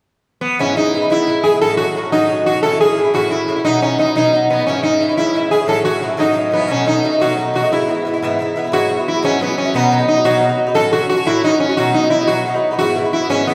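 A lively 6/8 lilt at 118 dotted-quarter beats per minute drives this rollicking Celtic folk piece in E major, cut from a longer work. The sitar enters at 0.4 seconds to carry the melody, its mellow, round tone buzzing and shimmering with sympathetic strings as it is plucked with a plectrum. From 0.6 seconds the Irish bouzouki picks out the accompaniment on bright, metallic double strings, moving through E, F#m, A and B before a C#m, F#m7 and B7 turn brings the phrase home to E. The second section opens on an Eadd9 at 8.7 seconds and cycles between B, F#m and E, closing out the passage. Both instruments sit up front, yet the whole is heard from further back in a recital hall whose generous reverb lends the performance a spacious, ringing bloom.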